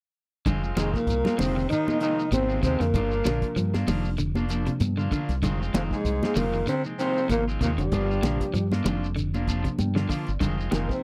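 A dry, close 1970s-style studio sound with little reverb frames this driving, funky afrobeat cut, taken from a longer piece and moving at 97 BPM in 4/4 with a light swing on the sixteenths, in F dorian, as the harmony alternates between Fm7 and Gm7. From 0.5 seconds a damped 70s drum kit with a fat snare, tight kick and hi-hat sets the groove, joined by bright, high-tuned congas in the background and a grainy, mellow shekere, while a deep dub fingered electric bass sits up front, dark and round. Two slightly broken-up electric guitars weave through the groove, one picking arpeggios bathed in spring reverb, the other playing twangy stabs with a warbly pitch drift. At 0.8 seconds a bucket-muted trombone takes the melody up front, veiled yet growling, with scooped notes and vibrato, while a breathy, whispered alto saxophone and a raspy, punchy baritone saxophone that sounds distant and roomy add second lines. 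A bell-like tine electric piano comps cleanly in the background and steps out with a fill from 9.5 to 10.4 seconds.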